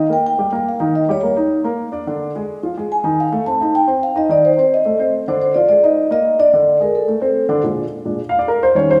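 A generous studio reverb surrounds this lively, danceable jazz excerpt, which sounds like a band playing live together in one large room. The tempo is a brisk 215 BPM in a straight 4/4, centred on Bb mixolydian and tuned slightly high, with A4 at 444 Hz. Up front, a vibraphone struck with soft mallets carries the melody in a ringing, airy voice, its motor switched off. Beside it, a dark baby grand piano supplies the accompaniment, intimate and short in sustain, with the action's mechanical noise clearly audible. The harmony moves from Eb through diminished and rootless dominant colours before settling on Bb7. At 7.6 seconds the vibraphone has dropped away, and the piano carries on alone until the clip ends at 9.0 seconds.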